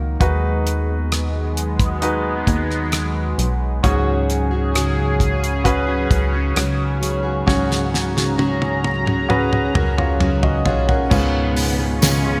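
A heartfelt, tender pop ballad at 66 BPM in 4/4, built on a polished, up-front grand piano, a bright, detuned sweeping pad with chorus, a plucky, punchy analog bass, and a damped 70s drum kit with a fat snare and gated reverb, set in bright 1980s-style digital production. A fingerpicked plugged-in steel-string acoustic guitar enters at 3.8 seconds with full-bodied arpeggios in the background, and a drum fill runs from 7.5 to 11.1 seconds. There, as the harmony moves to C#7, a lush, bowed symphonic cello section and a jingly tambourine join.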